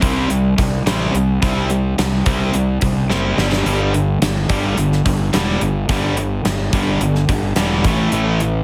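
A straight 4/4 hard rock groove at 107 BPM drives this powerful, anthemic fragment of a longer piece, with a gated 80s drum kit up front, its punchy kick and medium-tuned snare ringing through a bright stone room and breaking into a fill between 3.1 and 3.7 seconds. A dark, round fingered bass with fuzz and overdrive sits up front beside the kit, while a tight, distorted picked guitar and a hollow-body overdriven guitar, tucked in the background, each play a riff over power chords moving from C5 to G5 at 3.4 seconds and A5 at 7.9 seconds. Light reverb and small room ambience surround a heavily compressed, radio-style sound.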